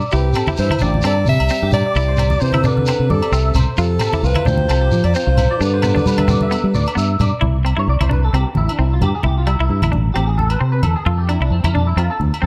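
A carefree highlife guitar band fragment opens with a clean, compressed, scooped electric guitar picking arpeggios, treated with an ensemble chorus and slapback echo, over a grainy, distant shekere. Almost at once a clear alto saxophone carries the melody with pop-style vibrato, shadowed by a mellow, roomy trombone playing a low second line in the background. A bright, twangy second electric guitar supplies the accompaniment, while a punchy fingered electric bass sits up front, with ringing agogo bells and low-tuned congas under soft hands adding light percussion. At 132 BPM in 4/4 with a gentle 16th-note swing, the harmony in C major moves from Cadd9 through F and G. The horns drop out at 7.0 seconds, and from 7.4 seconds a clean electric guitar takes a solo over Cadd9 and then F5, in a small-room ambience.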